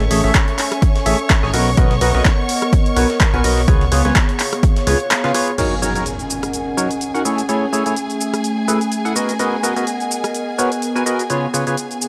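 Swung sixteenths drive this uplifting, euphoric piano house excerpt: an overdriven, up-front electronic kick plays until 4.7 s and a plucky, funky analog bass stops at 5.0 s, while a punchy analog drum machine with handclaps, rim click, shaker, hi-hat and crash, plus a very quiet, gritty breakbeat sampler-style kit with a high-tuned snare, carry the groove. A hollow, percussive organ stab riff with lush chorus and analog delay, sustained chords from a rich, vibrato-laden studio violin section, and a warbling, nostalgic tape-like pad all pump with the sidechain, as does the bass, while an electronic impact lands at 5.6 s and the harmony cycles through Amaj7, Bmaj7 and C#7. The dry hardware sound carries transformer saturation and a light reverb.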